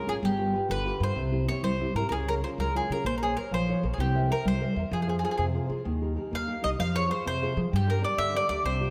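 This short excerpt moves in a lilting 6/8 at 128 beats per minute, counted in dotted quarters with a straight feel, and sets a passionate, wistful Italian serenade in F harmonic minor. An up-front mandolin carries the melody from start to finish, its picked double strings sounding mellow and woody, with a touch of tape echo trailing behind. Beneath it, a classical nylon-string guitar played with the thumb supplies the accompaniment on fresh strings with a dark tone. An upright bass joins at 0.1 seconds, plucked pizzicato on steel strings for a growly, woody low end. The harmony winds through G7, C, Db and Bbmadd9 before settling toward Fm, Eb and closing on Gm. A wet recital hall reverb surrounds the trio, lending the serenade an intimate yet spacious glow.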